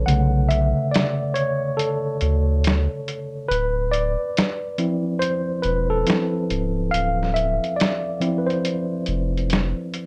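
A light reverb and a hazy, reflective cassette-worn glow open this lo-fi hip hop fragment, set at 70 BPM with a lazy 16th-note swing. A worn, slightly out-of-tune tine electric piano, lightly overdriven as if through built-in speakers, carries a solo through the full 10.1 seconds, moving from Bm9 to Dm9 at 3.5 seconds. Alongside it, just as up front, sit a deep, thick, saturated sub bass and a muffled, compressed sampler-style kit of hi-hat and medium-tuned snare, re-recorded in a small room.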